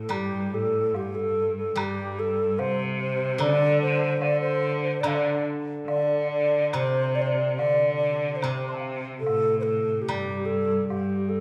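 Chinese traditional chamber music, graceful and pastoral, moves at a rubato 72 BPM in 2/4 through this short excerpt cut from a longer piece. A breathy, hollow xiao carries the melody up front with vibrato and a soft attack, while a single bowed cello with a focused tone adds a second line. A steel-string zither played with fingerpicks supplies silvery, ringing accompaniment, and a woodblock sits in the background from 0.1 to 11.1 seconds, all set in the wet reverb of a recital hall.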